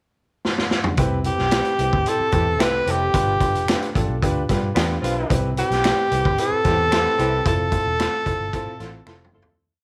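A gritty, saturated garage drum kit opens with a fill at 0.4 s, its boomy kick and backbeat soul groove carrying this joyful, uptempo 1960s-style soul piece. Woody upright piano eighths, a round, foam-muted electric bass line with ghost notes and slides, and very quiet, dry finger snaps fill in beneath a breathy, up-front tenor saxophone playing scooped, motif-based call phrases with vibrato. From 2.3 s a dark, distant horn section adds short stabs with slapback echo, and the whole short piece sits in light studio reverb before fading out from 7.5 s.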